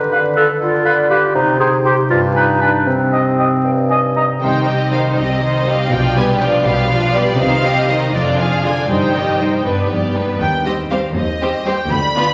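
In a straight 6/8 at 80 BPM, this playful, mischievous C minor film cue opens with a woodwind group: a clear, up-front clarinet, a very quiet, hollow flute and a distant, roomy oboe share the second lines over a bassoon accompaniment with light vibrato, all above a ringing, thumb-plucked concert harp whose arpeggios run throughout. At 4.4 s the woodwinds give way to lush bowed strings, where a focused violin section carries the melody over a soft-attack second violin line, an expressive viola section with portamento, and a smooth cello section and double bass section sitting in the background. A wet scoring-stage reverb and a layer of vinyl crackle give this quirky, whimsical cue a vintage cinematic sheen.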